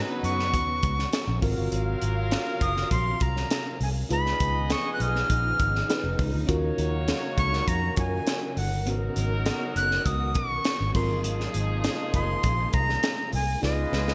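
A breathy, bright jazz flute carries the melody up front in this bittersweet, slick 1980s jazz-funk pop excerpt at 101 BPM, with a round, foam-muted fingered electric bass and a crisp fusion drum kit with a punchy kick, high-tuned snare and gated reverb joining at 0.2 seconds. A clear, tight horn section plays a second line, while a bell-like FM electric piano with tremolo and subtle chorus and a dark, smooth-topped string section holding sustained chords sit in the background over changes moving from Abm11 through Ab13, Db9 and Ebm7. The polished, bright digital production carries light studio ambience, and a drum fill at 13.6 seconds closes the passage.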